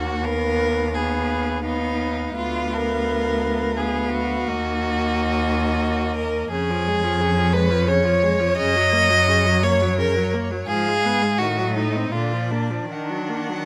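In a three-beat metre, the music moves with a flexible rubato, stretching and easing its pulse the way a slow romantic string quartet movement might. The mood is elegiac and yearning, a brief cut from a longer piece. The first violin carries the melody high in its range, singing with vibrato and expressive portamento slides, yet it sounds distant and sits noticeably lower in level than the second violin. That second violin plays a smooth, even inner line that comes up front, while the viola supplies a focused accompaniment beneath. The cello anchors the bass with a focused, vibrato-laden tone, and all four bowed parts share a rich, full-bodied colour captured by close, detailed microphones in light reverb. The harmony darkens through diminished chords around 10.7 and 11.4 seconds before settling back onto the home minor chord at 12.9 seconds.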